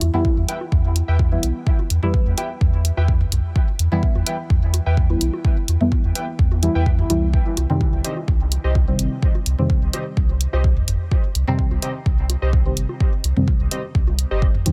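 Dub techno with a cavernous, nocturnal mood, moving at 127 BPM in a straight 4/4 and cut from a longer piece. A clean, smooth sine sub bass pumps under the sidechain from the start alongside an up-front electronic hi-hat, joined at 0.2 seconds by a deep, layered electronic kick, and both drums carry a small-room character. Deep, full-bodied chord stabs with detuned sawtooth and triangle tones decay through chorus, phaser and dub echo, shifting from E minor to C minor at 7.3 seconds. Above them, a warbling, lo-fi synth keys riff with ring-modulated, nostalgic colour enters at 0.5 seconds, softly placed and trailing its own dub echo. Overdriven analog-tinged bongos and toms sit in the background with sidechain pumping and echo, all wrapped in a digital ambience.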